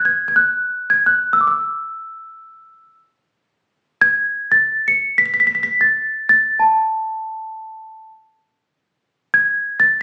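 A solo celesta, bell-like, delicate and sweet, sits close and up front under light reverb, carrying a festive Persian modal melody high in its range for a brief 10-second cut of a longer piece, captured on a phone in the room with added reverb and compression.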